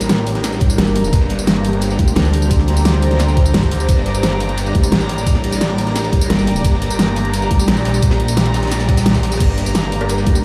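Played through a big sound system in a bare stone room, this dark, aggressive cut of technical drum and bass in G minor drives at 174 BPM over a sustained G minor chord. An up-front, overdriven dubstep kit with a huge snare, bright hats, crash and tambourine is joined by a knocking electronic kick, with a very quiet, gritty breakbeat kit and its high-tuned snare sitting underneath. A snarling, growling distorted saw bass is joined by a metallic FM wobble bass from 0.8 to 7.7 seconds, a deep, moody ambient pad and an airy, breathy phased pad both pump with sidechain, and at 10.0 seconds a muted dub chord stab flickers in the background through cassette tape and dub echo.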